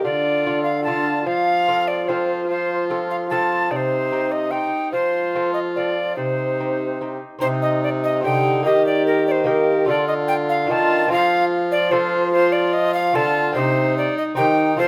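Rustic and solemn, this renaissance-style consort dance in C dorian moves in a straight 3/4 at 147 BPM, its opening phrase returning at 7.4 s in this passage cut from a longer piece. An airy, woody alto recorder carries the melody up front with vibrato and a tongued chiff, while a bowed viola with reedy gut-string tone plays a second line beneath it. A delicate fingerpicked lute on double gut strings fills the accompaniment, and a soft-attacked bassoon, also up front, anchors the bass, all set in a moderate stone room reverb.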